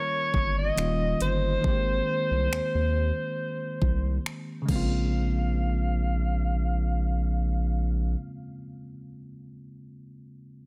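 A lightly swung 69 BPM groove in 4/4 carries this longing, moody contemporary R&B excerpt in Bb dorian, where an electronic kit with a knocking kick, metallic hats, finger snaps and crash sits up front with overdrive until 4.9 seconds, alongside a deep, thick, saturated sub bass that holds on until 8.2 seconds. A bell-like tine electric piano, clean and direct through a low-pass filter, voices Eb7, Abmaj7 and Bbm7 chords and rings on alone to 10.7 seconds, while a filter sweep colours the opening 5.1 seconds. Above it all, a breathy, whispered alto saxophone with light vibrato and a soft attack plays an intimate, jazz-style solo melody that sounds distant and roomy yet stays up front, over a dry mix with little reverb.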